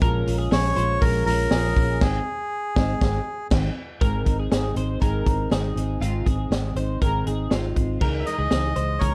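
A dry, dark production with a warm tone and very little reverb frames this short excerpt of jangly indie pop, nostalgic yet bright, moving at 120 BPM in a straight 4/4 in Ab major. Up front, a vintage drum kit pairs a punchy kick and high-tuned snare with dark cymbals, hi-hat and crash, its top rolled off in a natural studio room. A foam-muted, fingered vintage bass gives round, amped low notes, while a jumbo steel-string acoustic guitar picks a full-bodied accompaniment with audible finger squeak. Above them, a twangy twelve-string electric guitar picks compressed, clean arpeggios through an analog chorus. A reedy, nasal melodica carries the tune from 0.5 to 3.5 seconds, the band accents from 2.0 to 4.0 seconds as the harmony moves from Bbm7 to Ab, and the breathy melodica returns at 8.2 seconds over a closing Dbmadd9.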